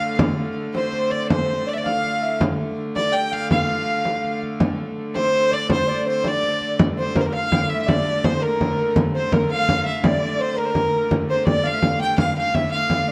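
Mysterious and driving, this medieval dance in D minor moves in a straight 6/8 at 110 BPM and gradually speeds up across its 13.1 seconds, cut from a longer piece. A rich, smooth fiddle carries the melody up front, bowed by one player with light vibrato and a touch of delay. Behind it, a breathy, reedy alto recorder and a very quiet, flute-like synth lead with soft attack and chorus shadow the same register as second lines. A nasal, wheel-bowed hurdy-gurdy holds a low drone throughout, while a frame drum played with hard hands sits prominently in the mix with a live-room presence. The production is dark, set in a moderate echo-chamber reverb, with an opening passage giving way to a second section at 6.8 seconds.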